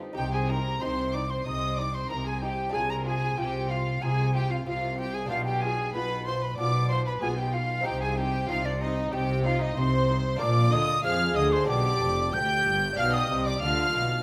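At 0.0 seconds, a dark cello section, a rich period-style violin section on the second line and a delicate, fingerpicked lute in the background set up this stormy, dramatic movement in C minor. By 0.2 seconds the full band is present: an airy silver concert flute carries the melody together with a close, gut-strung violin section with light vibrato. Beneath them, a distant viola section fills in the harmony while a double bass section joins the cellos on the bass line. The music moves at a steady 94 BPM in a straight 4/4, its harmony leaning from C minor through a half-diminished chord toward G7 and back, then passing through B-flat and G before landing on G7 again. The reedy string tone, the flute's soft attack and the lute's bright double strings sit in a reverberant recital hall, giving this cut from a longer baroque-style concerto a grand, echoing depth.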